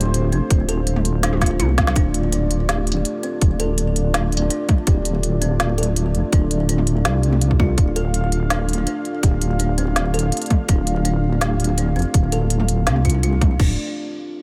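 A tape-toned organic electronic kit with a woody snare, smooth hats, crash cymbal and toms opens the excerpt and plays a fill between 1.2 and 2.0 s, while a hard-clipped electronic kick drum sits up front from 0.5 s. This is a dark, heavy half-time drum and bass drop at 165 BPM in D minor, held on a D minor chord, where a deep, saturated wobble bass with detuned sawtooth and sine layers and chorus throbs beneath a moody, mellow analog pad whose sustained chords pump against the sidechain. A bright, ringing kalimba enters at 0.3 s with airy delayed arpeggios, all in a dry, close sound cut from a longer piece.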